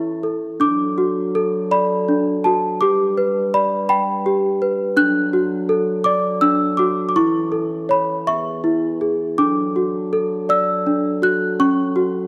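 A small celesta with hard felt hammers sings a bell-like, delicate melody up front, while a dark, close-miked French horn section holds loosely played sustained chords beneath it from the very start. This tender, sleepy children's lullaby sways in a rubato 6/8, its classical-style horn voicings sitting well under the sweet celesta line. A moderate concert hall reverb surrounds this brief passage, which is cut from a longer piece and runs to 12.3 seconds.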